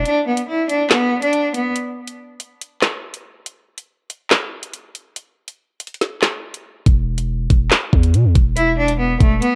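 A deep, sine-like 808 bass hit opens this cold, ominous drill excerpt, and a bowed cello and an electronic drum kit arrive immediately after. The half-time groove is built on a knocking kick, a woody snare, metallic hi-hats, handclaps and rim clicks, all placed up front with a cassette-tape grit. A single cellist plays a bright, biting line with vibrato, sounding intense and close, also colored by tape, before dropping out. Most of the passage sits in a sparse break, and the long, mellow bass returns at 6.9 seconds with a fast attack, decaying beneath the drums. The cello re-enters at 8.6 seconds to close the fragment, and light digital reverb gives the home-recorded sound a faint sense of space.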